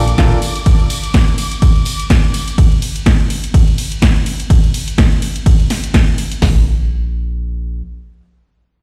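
Piano house at 125 BPM in Bb major, euphoric and joyful and cut from a longer piece, opens its drop with a lush, distant violin section holding sustained chords with vibrato and sidechain pumping until 2.6 s, beside a faint tambourine with shaker and group-handclap colour, while two layered electronic house kits with punchy snares and tape-warm hats drive the groove, the louder one up front with its kick, and a funky sawtooth analog bass pluck bursts in briefly at the start and returns at 6.4 s as the drums give way, the mix sounding as if played on a big sound system in a bare stone room.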